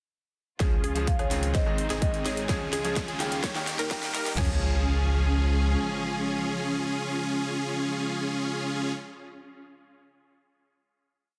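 A dense, compressed supersaw leads this euphoric, anthemic festival progressive house piece at 127 BPM in Db lydian, its huge, detuned sawtooth riff up front in dotted-rhythm chords, pumping against the sidechain, run through a low-pass filter sweep and dub echo during the build from 0.6 to 4.4 seconds. Beneath it, a saturated sub bass sits deep and thick, following the chord rhythm, while a big-room dance drum kit drives a four-on-the-floor pattern with a punchy kick, a huge snare, toms and crash, with a second layer of metallic programmed hi-hats, rim clicks and a high-passed backbeat snare, all packed into a drum fill across the build. In the background, a bright concert grand piano plays dotted-rhythm chords, a lush unison pluck doubles the chords in arpeggios, and a symphonic string section holds smooth, bowed sustained chords, each pumping with the sidechain. A mellow marimba with soft mallets enters at 1.1 seconds with round hook phrases trailed by dub echo, and a very quiet riser and impact marks the transitions. 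The drums drop out around 4.4 seconds as the music settles onto a final Db chord, all bathed in a lush hall reverb and a dense, heavily limited modern master.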